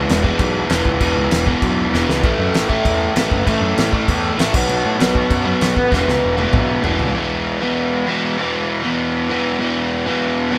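A biting, overdriven, double-tracked electric guitar sits up front, picking an E5, A5 and B5 riff through this energetic, upbeat punk rock excerpt, driven by a bright, growly fuzz bass and a loose acoustic kit with a fat snare, punchy kick, dark cymbals and a pumping room sound, with drum fills at 1.9 and 5.9 seconds before the bass and drums drop out at 7.1 seconds and leave the guitar alone in the light reverb of a live band sharing one room.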